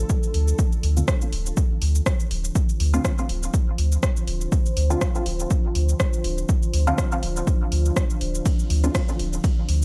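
A hazy, deep dub techno excerpt in D minor at 122 BPM opens with a dark, detuned pad sustaining Dm chords over a round, soft sub bass, both pumping under sidechain, while a bright, resonant bubbling texture flickers in the background for only the first 0.6 seconds. A punchy, overdriven electronic kick and a layered deep house kit of hi-hat, ride, rim click and shaker arrive at 0.1 seconds, and from 1.0 to 9.0 seconds a muted, mellow chord stab with a filter pluck, phaser and dub echo sounds over the Dm7 harmony. The mix is dry and gritty, with the kick and sub bass sitting up front and the pad carrying its own chorus and reverb.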